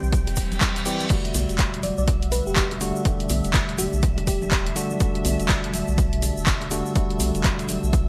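A swung 16th-note groove at 123 BPM in 4/4 drives this short deep house excerpt in E minor, its hypnotic mood set by an overdriven electronic kick and a punchy analog drum machine of crash, handclaps and hi-hat, both re-recorded in a large room, the machine wrapped in gated reverb. Quiet, ringing congas and bongos sit close and dry beside a grainy egg shaker tucked into the background, while a round sine sub bass pumps with the sidechain. A clean tine electric piano plays delayed, pumping stabs over a very quiet, moody sawtooth pad and a shimmering vintage string machine of violins with ensemble chorus. An electronic reverse cymbal sounds from 0.4 to 1.1 seconds as the harmony moves from C to Em11, and from 1.8 to 4.7 seconds a sparkling, bell-like FM electric piano carries the melody with chorus, tremolo and delay. Light digital ambience frames a bright 1980s-style production.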